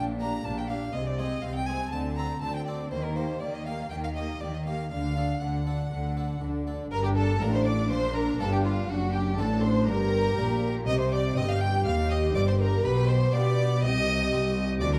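A straight, steady 4/4 pulse drives this stormy, dramatic baroque-style concerto movement, cut from a longer piece and built around solo episodes. A clear solo violin carries the melody with smooth, even vibrato, joined in the background by a lush symphonic violin section that adds portamento. A rich chamber violin section plays a second line, while a focused chamber viola section with a silky top fills out the accompaniment beside a round, plucked harpsichord set back in the mix. Underneath, an expressive, bowed double bass section sits up front and close, joined by a studio cello section on the bass line. A new section begins at 6.9 s, and a moderate recital hall reverb surrounds the ensemble in a dark production.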